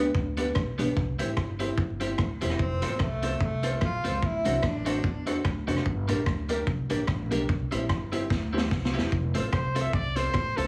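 Ska in F major at 147 BPM with a lightly swung, upbeat and joyful feel, this short cut from a longer piece rides on a gritty, up-front vintage drum kit, woody pizzicato upright bass, a slightly broken-up electric guitar drenched in lush chorus, and dark, boxy upright piano stabs touched with slapback echo. A breathy, whispered tenor saxophone carries the melody from 2.6 to 5.3 seconds, and after a drum fill a bright trumpet with tube saturation takes a solo from 9.5 seconds. The whole mix has a heavily compressed radio sound with vinyl crackle and small-room ambience.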